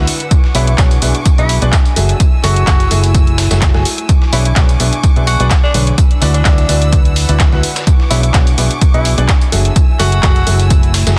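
Piano house at 127 BPM in B dorian, soulful and bittersweet, with a lightly swung 16th-note feel in this short cut from a longer piece. A clear, woody upright piano with short sustain carries the riff through delay, sitting over a dark, round, foam-muted electric bass and a punchy, tape-warm electronic kick placed up front, which enters at 0.3 seconds. Bright layered hats and handclaps from a house kit combine with a gritty, compressed sampler-style kit of hi-hat, fat snare and tambourine, high-pass filtered and tucked behind. A lush bowed violin section holds sustained chords in the background alongside a warbling, detuned lo-fi pad with slow attack, chorus and its own reverb, while the piano, strings, bass and pad all pump with sidechain. From 0.5 seconds a distant, roomy tenor saxophone plays a jazz-style solo line with scooped notes and light vibrato, echoed by delay, as the chords cycle through Bm69, F#m9 and D69 in a dense, heavily limited mix with little reverb.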